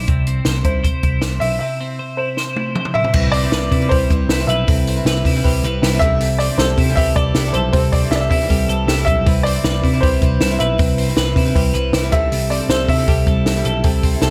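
Punchy, up-front cocktail drums with a high-tuned snare, dark cymbals and gated reverb drive this nostalgic, youthful jangly indie pop excerpt, where a bright, twangy twelve-string electric guitar plays arpeggios through analog chorus and tape echo over a round, foam-muted picked bass, a worn, woody, slightly detuned upright piano carries the melody with tape echo from 0.6 s, and after a break capped by a drum fill at 2.4 s, a picked steel-string acoustic guitar in the background and a reedy electric piano with fast tremolo join at 3.1 s as the harmony moves from C to Cmaj7, all set in a light small-room ambience.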